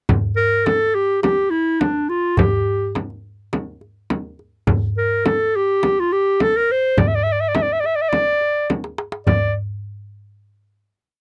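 This short Turkish makam ensemble piece in D makam ussak carries a longing, soulful mood at 104 BPM in a straight 4/4. Darbuka and frame drum open the piece together, the clay-shelled darbuka struck with hard hands on natural skin while the frame drum is played with soft hands. Both drums play a pattern of low and high strokes. At 0.4 s a warm, classical-style clarinet enters as the solo voice, sitting up front and spinning an ornamented modal melody between D4 and E5-28c. A drum fill at 8.7 s leads into a final note from 9.3 s. The close, dry sound recalls a 1970s studio, with a light touch of reverb.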